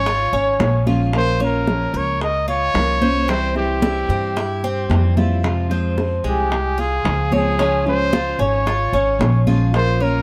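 A straight 4/4 pulse at 112 BPM carries this nostalgic Cuban son and guajira excerpt, where a breathy, whispered trumpet with vibrato sings an intimate solo melody up front over a woody pizzicato upright bass, a dark, full-bodied fingerpicked steel-string acoustic guitar, metallic double-stringed tres arpeggios, tight, high-tuned vintage bongos and damped, soft-handed congas tucked in the background, set in a light reverb as the harmony moves through Db, Bbm, C and Fm before returning to Db.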